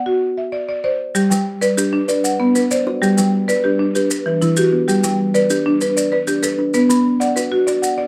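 A straight 12/8 pulse at 129 BPM, counted in dotted quarters, drives this fragment of a southern African traditional piece built on a hypnotic, rippling mbira-style interlocking cycle in G major. A buzzing marimba struck with medium hard mallets opens alone, its woody, dry hardwood bars sitting up front as it spins arpeggios over a rootless Bm. At 1.2 seconds grainy, mellow maracas join in the background, and at 1.3 seconds a plucked kalimba adds its own ringing, smooth arpeggios alongside the marimba. The harmony cycles among G, Bm and Em, ending on Bm. Light reverb and a dark, warm production give the whole cut a close, intimate glow.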